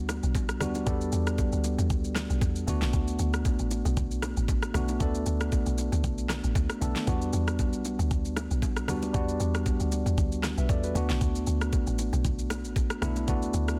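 A swung 4/4 groove at 116 BPM drives this soulful, late-night amapiano cut in E minor, lifted from a longer piece and built on a two-chord sway between Em9 and Bm7. A woody, punchy log drum bass with a fast attack and dark, decaying tail carries the low end from the first moment, its FM tone edged with a noise layer. The electronic R&B drum kit sits up front with a knocking kick, rim click, shaker and a fat, overdriven snare given soft clipping. A warm, clean tine electric piano, heard through a combo amp and also up front, supplies the chords. Ringing acoustic bongos and congas, struck with hard hands and miked close, sit in the background and drop out at 13.4 seconds. The whole is wrapped in digital ambience and a dense, heavily limited modern master.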